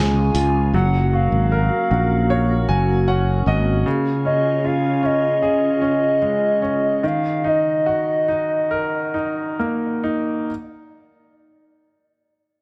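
This pop ballad fragment carries a longing, emotional mood in a straight 4/4 feel. A hollow, woody synth lead with a clarinet-like tone sings the melody in a high register, its detuned voice given vibrato and a chorus sheen. Underneath, a brilliant concert grand piano sits up front with audible action noise and deep bass, playing a fill from 2.3 to 3.9 seconds. A glassy, ethereal FM pad holds sustained chords through a built-in reverb and ensemble chorus until 7.0 seconds, while a growly, punchy fretless electric bass anchors the low end and stops at 3.8 seconds. A gritty, pitched-down electronic hi-hat flickers only briefly near the start, the harmony moves from Db through Gb and back before settling on Ebm, and the music slows from 3.9 seconds to the close inside a light digital ambience.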